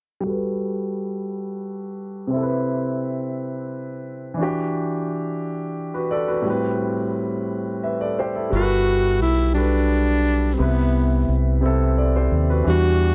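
Slow six-eight R&B in G major at 58 BPM, sensual and warm, where an open, long-sustaining concert grand piano plays alone under a low-pass filter sweep, moving through Gmaj9, Cmaj7, Em9 and Am9 chords from 0.2 seconds. At 8.5 seconds a dark, round fingered electric bass enters with a tenor saxophone that carries a subtone melody with a soft attack and light vibrato in a close-miked jazz style. All three parts sit up front in a dry, close 1970s-style studio sound, and the piece is cut from a longer work.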